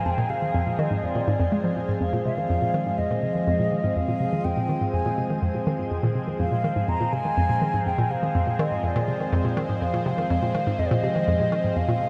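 A straight 4/4 pulse at 123 BPM drives this fragment of hypnotic, expansive, sequencer-driven space music in F dorian, tuned to A4 = 438 Hz. A bouncy, up-front square-wave pluck enters at 0.1 s with a low riff from F2 to Ab3; its detuned, wave-folded tone has a fast attack, short decay and a noise layer, and it passes through chorus and tape echo. Above it, a swirling analog pad holds sustained chords between F3 and C5 over a single Fm chord. The pad's bright sawtooth sound has a slow attack and long release, and it is treated with phaser, chorus and shimmer reverb. Higher still, a distant wooden flute carries the melody from D5 to Bb5 with a pure, tongued tone and vibrato, colored by shimmer reverb and tape echo. A huge, wet ambient reverb with an 8.4-second decay wraps the whole 12.1 seconds, which stay in one continuous section.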